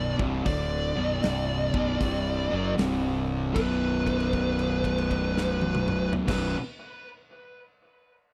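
A double-tracked, up-front fuzz guitar riff drives this heavy, hypnotic stoner and doom metal cut at a swung 78 BPM in B phrygian, shifting from Bm to B5 at 3.6 seconds, alongside a dark, compressed fuzz lead guitar melody trailing tape echo, a round, overdriven fingered electric bass, and a big-room acoustic rock kit with a punchy kick entering at 0.2 seconds, with a held note sustaining until 6.2 seconds in a dry, close 1970s-style studio sound.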